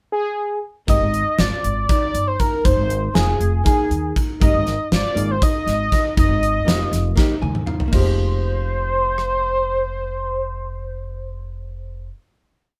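A bold, retro octave-doubled lead sits up front, its sawtooth-and-triangle tone given a fast attack, long sustain, vibrato, chorus and phaser as it states a motif-based melody in arching phrases from the first tenth of a second. This is a tense, intricate progressive instrumental in 7/8 at 239 BPM counted in eighths, in F dorian, played by a band live in one room with light reverb. After a pickup bar the rest of the group enters at 0.9 seconds: a gated 80s acoustic kit with a fat snare, tight kick and bright cymbals drives the 7/8 groove, while a woody, growly pizzicato upright bass sits up front with a syncopated riff. A clean, picked hollow-body archtop guitar comps freely in quartal voicings, and a dark, mellow grand piano repeats an arpeggiated ostinato in the background over chords moving between Ab5 and Fm7. The drums and guitar play a fill from 7.2 to 7.9 seconds, leading into a final chord, with the drums stopping at 9.3 seconds and the piece ending at 12.2 seconds.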